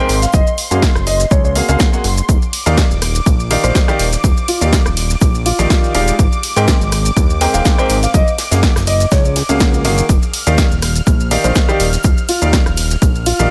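A dark, mellow grand piano opens this feel-good, euphoric piano house excerpt, carrying the melody with a vintage intimacy, its action noise audible and a digital delay trailing its notes. A clear, woody upright piano plays a riff alongside it, and a silky, string-like analog pad holds sustained chords high in the background with ensemble chorus, vibrato and sidechain pumping. At 0.1 seconds a fat, thick sawtooth bass arrives up front, detuned and saturated, pumping with the sidechain alongside a punchy analog drum machine whose overdriven snare, rim click, hi-hats, ride cymbal and shaker set a lightly swung 123 BPM groove in 4/4. A very quiet acoustic studio kit enters at the same moment, adding hi-hat, shaker and a medium-tuned snare underneath. An overdriven electronic kick drum joins at 0.3 seconds and sits prominently at the front of the mix. The harmony in Eb major moves through lush major-ninth chords, Gbmaj9, Ebmaj9 and Abmaj9, giving the passage an uplifting, open glow. 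The upright's long sustain, also touched by delay and pumping, blends with the small room ambience to round out the sound of this fragment cut from a longer piece.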